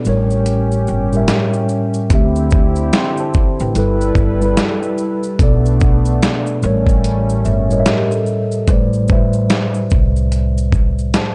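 Melancholic and reflective, this lo-fi hip hop excerpt drifts at 73 BPM with a lazy swing, built on a mellow tine electric piano accompaniment with cassette tape coloring that sits up front over a smooth, warbling analog pad with chorus, which holds sustained chords until 8.7 seconds. A compressed, gritty sampler-style drum kit with a thumpy kick, snare, shaker and hi-hat, re-recorded in a large room, anchors the groove alongside a woody pizzicato upright bass. From 7.4 seconds a soft-mallet vibraphone adds a brief ringing, metallic second line through tape echo, and the recording carries digital ambience with a dry, gritty hardware character.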